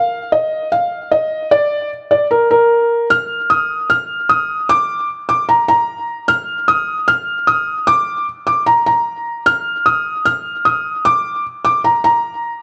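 Hard-hitting yet eerie, this short hip hop excerpt moves at 151 BPM in 4/4 with a half-time feel. A felt-muted upright piano plays alone throughout, its soft, intimate tone sitting up front in the upper register from Bb4 to F6, with a digital delay trailing its notes. Light studio reverb frames the piano, and the passage shifts into a new section at 3.1 seconds before the cut at 12.6 seconds.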